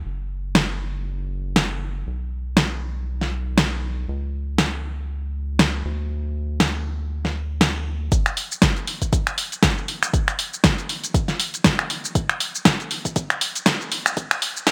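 Moody, late-night deep house with a swung groove, cut from a longer piece: a round, saturated analog bass with a wave-folded, evolving tone and sidechain pumping carries the opening alone until the drum kit's finger snaps, hi-hat, shaker and fat snare join at 0.6 seconds. At 8.1 seconds the bass stops and a deep, tape-warm electronic kick enters up front as a build-up with a filter sweep runs to the end at 14.7 seconds. Light reverb and a high-pass filter give the whole a close, small-room feel.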